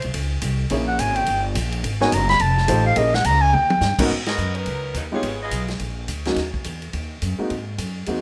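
Set in light reverb, this short cut from a longer big band swing piece has a swinging, brassy mood. A breathy clarinet with light vibrato takes the opening solo up front over a woody, growly pizzicato upright bass and a punchy vintage drum kit, while a warm baby grand piano comps from 0.7 seconds. After a drum fill and a band accent at 4.2 seconds, a clear saxophone section briefly carries the melody before the rhythm section plays on through the rest.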